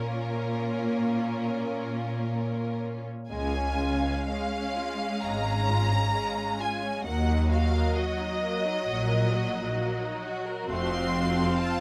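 Yearning and melancholic, this slow, romantic movement for string orchestra unfolds with a flexible, rubato pulse in 4/4, a brief fragment cut from a longer piece. The first violins carry the melody high above the ensemble with a focused, vibrato-laden tone. Beneath them, the second violins trace a lush, warm second line, while the violas fill in the accompaniment with a distant, even sound. The cellos and double basses anchor the bass in a rich, smooth blend, both falling away at 11.4 seconds as the upper strings sustain to the end at 11.8 seconds. A moderate studio reverb gives the bowed sections a sense of space, and the music moves from an opening passage into a longer second section at 3.3 seconds.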